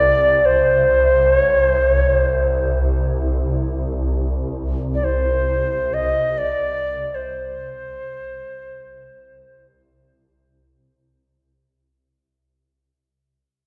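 World meditation music with a spacious, haunting mood, this fragment of a longer piece sets an airy, chiffy cedar flute melody, with tape echo, up front over a swarming, detuned, granular low drone carrying its own reverb, all within a dark echo-chamber ambience, fading out throughout before the flute drops away at 9.7 seconds and the drone lingers to 12.3 seconds.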